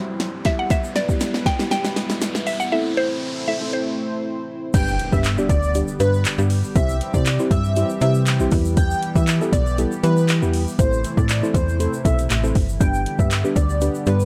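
This upbeat, carefree dance-pop excerpt in G major, at 119 BPM in a straight 4/4, opens on a woody, round mallet-like synth pluck carrying the melody, with chorus and analog delay. Beneath it sit a deep, nasal chord stab and a shimmering, retro pulse-width pad, both pumping against the sidechain, while an electronic riser builds through the opening. A smooth R&B drum kit with a soft kick, fat snare, metallic hats, handclaps and crash plays up front, opening with a fill, and a grainy egg shaker ticks in the background. The pluck drops out at 4.4 seconds, and at 4.7 seconds the drop lands with an impact. There an airy, dreamy lead takes over the melody, also with chorus and analog delay, and a snappy, slap-like FM bass with a metallic attack pumps up front. The harmony cycles through Em, Am, G and C, and the whole recording sounds dry and gritty, with very little reverb.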